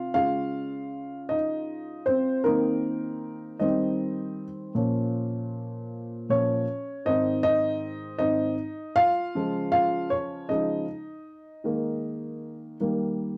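Pop piano piece, tender and heartfelt, moving at a slow 52 BPM in 6/8. A lone upright piano carries the whole 13.4-second passage, its tone dark, woody and mellow, with the noise of its action audible and a vintage, intimate character that sits up front. The harmony drifts from Dbadd9 through Cm7/Eb, Eb6 and Bbm to Ab, returns to Dbadd9, and settles on Ebsus4 resolving to Eb at 12.8 seconds. The playing spans from Ab2 up to F5, giving the part both low body and upper reach. A moderate studio reverb lends a natural sense of room around the instrument, and the tuning sits just above standard pitch. This is a short cut from a longer piece.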